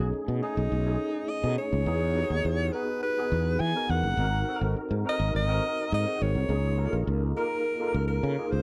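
A breathy alto saxophone carries the melody up front, close-miked and jazz-styled, with vibrato, scooped notes and a slapback echo on its solo line. This short cut from a longer piece is polished 1980s jazz-funk pop with an urban, breezy mood, moving at 104 BPM in a straight 4/4 in Db major. Beneath the horn, a mellow tine electric piano supplies the accompaniment, its clean tone sounding worn and slightly out of tune, heard as if through built-in speakers and shimmering with ensemble chorus. A sustaining fretless electric bass sits prominently in the mix, direct and growly with a warm, up-front presence. The chords pass from Cb13 to Emaj7, then Ab7, before settling on Db6 at 6.5 seconds. The sound is a dry, close 1970s-style studio recording with only light reverb.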